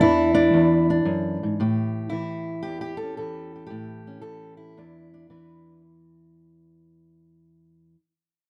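Swung eighth notes in a relaxed 4/4 give this short, laid-back yet rollicking acoustic country blues clip its easy bounce. A lone fingerpicked steel-string acoustic guitar with a warm concert tone sits up front, moving from E7 to A7 and on to a bare E5 as the sound fades gradually over the first 5.8 seconds. Close, detailed miking and light reverb keep the strings intimate and clear.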